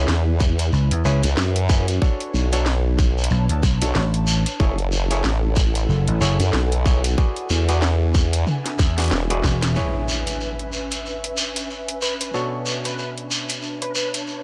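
A wobbling, sawtooth formant-sweep bass and a round, punchy slap bass drive this swaggering, funky glitch hop excerpt alongside a tight electronic kick and a drum kit of cracking snare, metallic hats, rim clicks and toms, while a stringy, overdriven clav through a combo amp stabs with sidechain pumping and analog delay, a distant, grainy shekere and an ethereal, airy pad add texture, the kick stops near 9.6 s as an electronic impact lands at 9.8 s under a filter sweep on the clav, and an edgy, tearing sync lead with lush chorus enters at 12.0 s, all captured as a dry, gritty hardware recording.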